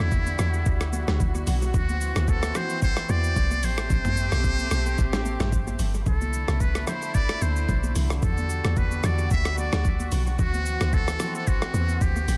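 A deep, round log drum bass sits up front in this late-night amapiano excerpt at 111 BPM with a 16th-note swing, joined by a gritty, overdriven sampler-style drum kit with a thumpy kick, a buzzy, breathy metal-muted trumpet melody with vibrato and analog delay, reedy bowed strings holding sustained chords through Em9, D9, Am9 and C69, and thick-skinned congas entering in the background at 0.3 seconds, all set in an echo-heavy digital ambience.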